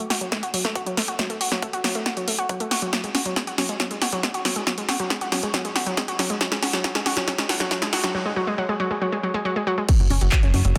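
Bittersweet and driving, this uplifting trance build-up cut from a longer piece sets a round, nasal analog pluck arpeggiating through chorus, delay and sidechain pumping against a tape-warm analog drum machine of congas, handclaps, hi-hat, crash cymbal and a punchy snare carrying a long drum fill, with a layered electronic kick entering at 0.3 seconds and a funky, sawtooth-edged bass arriving only at 10.0 seconds, set inside a lush hall reverb and a dense, heavily limited master.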